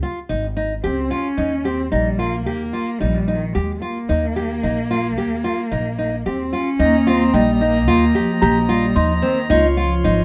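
Contemporary chamber music in an uneven 5/4 meter at 111 BPM, this playful, hopeful excerpt sits in Eb mixolydian with a straight feel. A full-bodied nylon-string guitar opens up front with fingerpicked arpeggios in a deep classical tone, joined almost at once by a woody, growly pizzicato upright bass on steel strings and a distant, dark bowed cello carrying the melody with vibrato. The harmony moves from Db to Ebadd9, then settles on Eb when a second group enters at 6.8 seconds. There a metallic, ringing vibraphone with medium hard mallets and fast motor vibrato adds a second line, while a pipe organ principal chorus holds sustained chords in a full, romantic voicing. A small, delicate celesta with hard felt hammers and a vintage, band-limited sweetness sparkles in the background from 7.3 seconds, as the chords turn to Dbmaj7 near the close. Moderate studio reverb gives the ensemble a natural sense of space.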